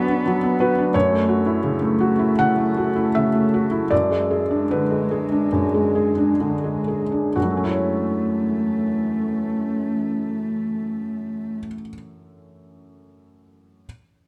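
A felt-muted upright piano, a single bowed cello and a deep ambient pad open together on this fragile, longing neoclassical fragment in F# minor, moving in 4/4 with a rubato feel between 61 and 88 BPM and slowing through its first 7.4 seconds. The up-front piano sounds mellow and intimate with audible action noise, while the woody cello plays a close, sul tasto second line with vibrato, and the moody, detuned pad holds slow-attack chords with chorus and its own reverb in the background. Cello and pad stop at 11.6 seconds, leaving the piano alone until 13.9 seconds in a moderate large studio space.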